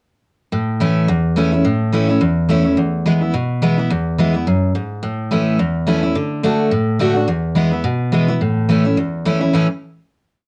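Cut to cassette at home and set in a moderate studio reverb, this short, complete bluegrass piece has a homespun, intimate sound. A lone picked steel-string dreadnought guitar sits up front with a full-bodied tone, playing from 0.5 seconds to just under 10 seconds. It drives along at a brisk 213 BPM in 4/4 with a light swing, mixing alternating bass and strum patterns with bass runs that carry it through A, E and D chords in A major. The mood is joyful and rustic, like a quick breakdown at a porch gathering. The piece wraps up on a final chord that arrives at about 9.5 seconds.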